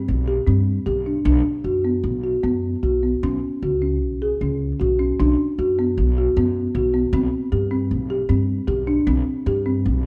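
Set in a straight 5/4 at 154 BPM, this hypnotic, restless chamber piece cut from a longer work pairs a folk marimba's soft-mallet arpeggios, rustic and airy on hardwood bars, with a thumpy pizzicato upright bass on gut strings, both up front in a wet recital hall reverb as the harmony moves between C5/B, B5 and a chordless stretch at 3.2 seconds.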